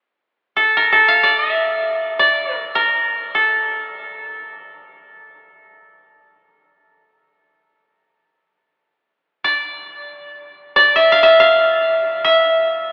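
Still and solitary, this excerpt of Japanese traditional music in free time and D hirajoshi (tuned to A4 = 438 Hz) features a solo koto, woody and up front under the fingerpicks, entering at 0.6 s and ranging from A4 to F5 through a cathedral-like reverb with a telephone-like sound.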